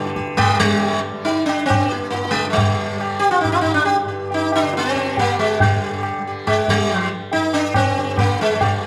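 A round, buzzing sitar sits up front with shimmering sympathetic strings, carrying a longing, solemn Hindustani classical melody in raga Bhairavi on G at 138 BPM in 7/4, over a warm, softly plucked tanpura drone and high-tuned, ringing tabla that sounds close and dry, while the recital-hall reverb lingers around them and the tempo gradually speeds up across this 8.9-second excerpt from a longer piece.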